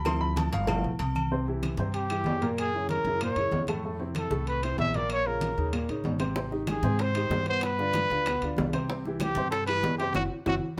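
Afro-Cuban jazz, lively and danceable at 190 BPM in 4/4, where an intimate upright piano with audible action noise and long sustain opens with a brief solo over growly pizzicato upright bass, ringing agogo bells and timbales, woody background claves, thick-skinned congas and round, close cowbell and bongos, before a breathy, whispered trumpet with vibrato and plate reverb takes the up-front melody at 1.9 seconds over shifting jazz chords, closing on a band accent at 10.2 seconds and a drum fill.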